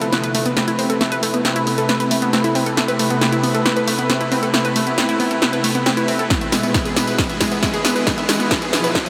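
A dreamy, reverb-soaked mix with a huge, lingering ambience and a thinned low end opens this short cut from an uplifting trance piece, euphoric and emotional at 136 BPM in A harmonic minor. A lush, thick unison pad of detuned sawtooth and square waves sits up front with sustained chords, its chorus and sidechain pumping giving it a breathing, full-bodied glow. Alongside it, a round analog pluck spins bright arpeggios with a fast attack and short decay, coloured by chorus, cassette-tape grit, ring modulation, a filter sweep and a diffuse ambient delay. The big-room dance kit drives the whole build-up as one continuous drum fill of hi-hat, tambourine and a punchy, up-front snare. A layered electronic kick arrives at 6.3 seconds as the harmony moves from Amadd9 to E, and a very quiet riser slips in at 7.8 seconds to heighten the anticipation.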